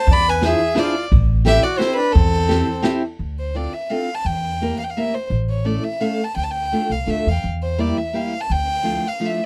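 A brisk 3/4 pulse at 170 BPM drives this nostalgic, whirling musette waltz, which settles into D minor at 3.2 s: an intimate sul tasto violin with light vibrato and an airy bow carries the melody up front over woody, growly pizzicato upright bass and a picked steel-string acoustic guitar with finger squeak, while a reedy accordion sounds until 2.8 s and a brushed drum kit with dark cymbals and a boomy kick plays until 2.9 s, captured in a dry, close 1970s-style studio sound.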